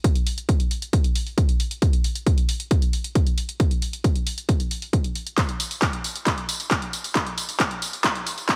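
Techno at 135 BPM in a dark, intense straight 4/4, this short cut from a longer piece is one build-up: a heavy, layered, tape-warm electronic kick sits up front beside a punchy analog drum machine whose handclaps, hi-hat and tambourine pump against the sidechain, all under light reverb, a high-pass filter and a running filter sweep, with a drum fill from 5.4 to 8.6 seconds.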